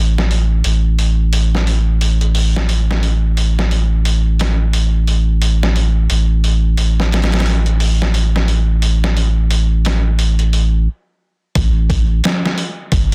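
A deep, round sine sub bass sits up front from the start, its fast attack and sustained notes anchoring this cinematic, smoky trip hop fragment cut from a longer piece. A swung, sampler-style kit joins at 0.2 seconds, pitched down, compressed and overdriven, with a thumpy kick, medium-tuned snare and hi-hat, all high-pass filtered and muffled as if re-recorded in a small room. The groove halts briefly from 10.9 to 11.6 seconds before a new section begins, and the dry, dense, heavily limited master keeps the sound close and heavy.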